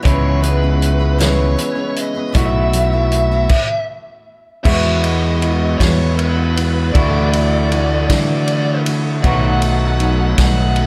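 Open-road and nostalgic, this slow 6/8 folk rock and heartland rock passage in E major at 52 BPM carries a dark, distorted bluesy lead guitar melody over a slightly broken-up, lo-fi riff from an electric guitar through a small old amp, a full-bodied jumbo steel-string acoustic guitar picking accompaniment in the background, a very quiet tonewheel organ holding sustained chords with key click, chorus vibrato and a fast rotary speaker, an up-front fingered electric bass, and a vintage drum kit with dark cymbals and a punchy kick, all in light reverb, with a stop from 3.5 to 4.7 seconds before the second section opens on an Eadd9 chord.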